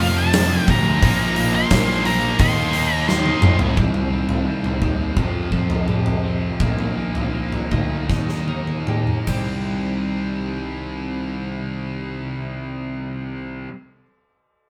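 Angsty and dark, this cut from a longer quiet-loud alternative rock piece in C dorian moves in a straight 4/4 at 73-87 BPM, slowing down through its middle, and sounds like a band playing live in one room with light reverb. It opens heavy: a dark octave-fuzz lead guitar with slapback echo carries the melody until 3.6 seconds over a swirling, very quiet phased string machine with vintage sawtooth chords, a pair of bright, scooped high-gain guitars (one double-tracked in the background) and a very quiet thick fuzz guitar grinding out the riff. A round, punchy fuzz bass and an up-front big rock drum kit with a punchy kick and bright cymbals drive it along with fills, until the drums drop out at 9.5 seconds and a clean, compressed twelve-string electric guitar, which enters at 3.8 seconds, keeps arpeggiating in the background over chords that move from Fadd9 and Bbsus4 to Eb and Cm.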